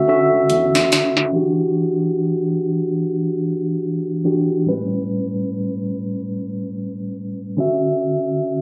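A mellow tine electric piano sits up front in this tender, smooth contemporary R&B excerpt at 72 BPM with a swung 16th feel, moving through Dmaj9, Em9, A9 and back to Dmaj9, while a dark, sustained synth bass with vibrato hangs in the background and an overdriven electronic drum kit with a sharp snare plays a short fill, both stopping at 1.3 seconds to leave the piano alone under a filter sweep, heard through a phone-in-the-room sound with club reverb.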